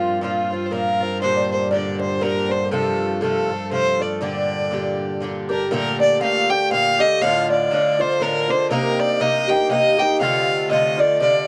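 A swung waltz in three drives this spirited Celtic folk excerpt, where a rich, smooth fiddle with light vibrato carries the melody up front over the metallic, double-strung picking of an Irish bouzouki, while a woody, hollow-toned kalimba rings a second line in the background and a distant, reedy gut-string cello holds a drone until 5.8 s, all in a dry, close 1970s-style studio sound.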